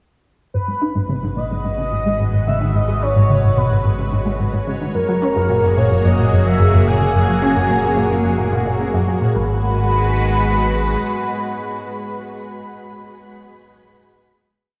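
Set in a vast, echoing cathedral-like space with a long reverb tail, this short, complete piece of hypnotic, expansive sequencer-driven space music moves at 109 BPM in G# minor, shifting from G#m7 to F#add9 and settling on a final G#m7 chord at 9.3 seconds. A juicy, squelchy blip pluck drives a repeating 16-step riff through phaser, ensemble chorus and delay under a filter sweep, while a fat, saturated analog bass holds the root and a lush, detuned unison pad fades in with its sustained chords. Above them a shimmering, retro pulse-width lead sings arching motifs with vibrato and portamento, and a faint bubbling texture with random filter steps fades in on a held high note in the background before the pad and lead ring out to 12.3 seconds.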